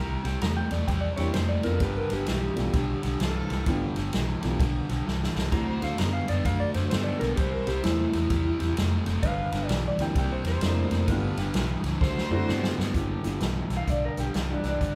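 A rollicking, swaggering electric blues shuffle with a swung feel, this cut from a longer piece opens on a crunchy overdriven guitar riff over a round, foam-muted vintage bass, bright horn stabs with light vibrato, and a punchy big-band drum kit that enters at 0.2 seconds with fills along the way. A clean, compressed lap steel plays a dark slide line with volume swells until 10.7 seconds, while a mellow, woody upright piano drifts in and out with long sustain. At 13.8 seconds a slightly broken-up, lo-fi guitar through a small old amp takes the melody with spring reverb, all set in a live band sound within a large studio room.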